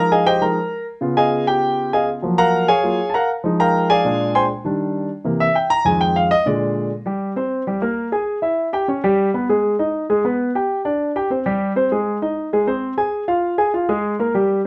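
A solo concert grand piano sits up front in a moderate club reverb, its tone warm with a deep bass that gives the low register real weight. This is a short jazz passage cut from a longer piece, moving at a brisk 198 BPM in a straight 4/4 feel, and the mood is sophisticated and sunny. The piano covers a broad span from F2 up to C6, and the opening seven seconds run through rich extended harmonies such as Fm9, Db9, Gbmaj9 and Bb13 before settling through Ebmaj7, C7 and Fm7. At 7.1 seconds the second section begins on Gmadd11 and turns toward plainer, starker colours, with Em, G, Abm and open fifths like G5 and C5. The clip closes on Bb5 at 13.1 seconds, leaving the harmony suspended as the excerpt ends.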